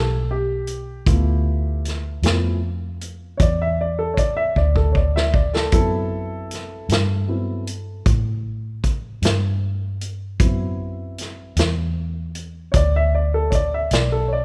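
Lightly reverberant and up front, this swaggering, rollicking slow blues excerpt in 12/8 features a dark, mellow grand piano soloing throughout with audible action noise and short sustain, over a round, foam-muted electric bass and a punchy vintage drum kit with a rolled-off top that enters at 0.7 seconds and plays a fill from 4.6 seconds just before the harmony moves from G13 to D13.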